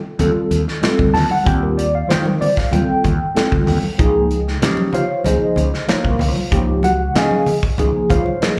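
Funky and slick, this short cut from a longer electric jazz fusion piece moves at 95 BPM in a straight 4/4, with a mellow tine electric piano sitting up front through phaser and slapback echo over Ebmaj9 and Dbmaj9 chords, a dark, round, punchy fretless bass underneath, an acoustic drum kit with a tight kick and medium-tuned snare in a pumping small room that closes with a fill at 8.3 seconds, and bright, saturated congas tucked in the background, all heard as a live club gig through the venue's PA.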